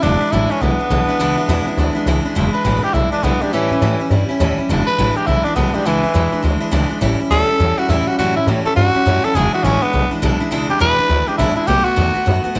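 A swung eighth-note feel at a brisk 206 BPM in 4/4 drives this upbeat, retro rockabilly clip in E mixolydian, cut from a longer piece. The upright bass anchors the low end with pizzicato gut strings, its tone woody and thumpy, sitting up front. A picked steel-string dreadnought acoustic guitar carries the accompaniment with a bright, full-bodied sound from fresh strings. Over them a growling tenor saxophone leads the melody, raspy and gritty yet smooth on top, with vibrato and a pop-style delivery, before moving into a solo from 2.4 s. The harmony cycles through E7, A7 and back to E7 before landing on B7 near 11.7 s. Light reverb gives the upfront trio a touch of space.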